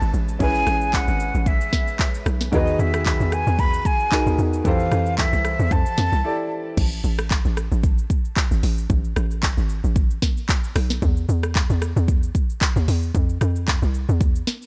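A swung amapiano groove rides on an electronic afro-pop kit of deep kick, sharp snare, metallic hi-hats, rim clicks, shaker, handclaps and crash, while a hollow, bouncy log drum bass sits up front in this relaxed excerpt from a longer piece. A breathy, mellow jazz flute with vibrato and tape echo carries the melody over clear, boxy baby grand piano chords moving through Amaj9, Emaj9 and Fmaj9. After a short break at 6.2 seconds, the drop at 6.8 seconds strips the texture down to just the drums and log drum bass, dry and up front, to finish out the passage.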